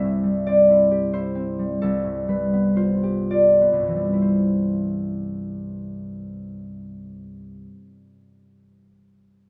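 Classical solo harp music in 3/4, peaceful and graceful, with a free, rubato feel that slows down through the first 4.2 seconds. A single concert harp, thumb-plucked, bright and ringing, sits up front across a span from C2 to G5, captured by close, detailed microphones with light reverb. The short passage, cut from a longer piece, moves from C through G7/C and back to C, and the harp falls silent at 8.1 seconds.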